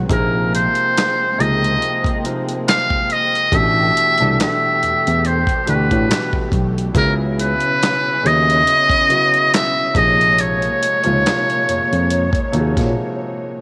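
Light reverb and a small-room ambience frame this introspective, smooth neo-soul and R&B fragment at 70 BPM with a gently swung 16th-note feel, where a buzzy, breathy metal-muted trumpet sings an up-front jazz-style melody with vibrato and scooped notes over a warm, natural-sounding concert grand piano, lush sul tasto strings in the background, a barky tine electric piano carrying the bass through a combo amp, and a gritty, compressed sampler-style kit of thumpy kick, snare, hi-hat and handclaps, moving through Bb7sus2, A7sus2, Dbm9 and Bbm9 before a brief break at 13.0 seconds.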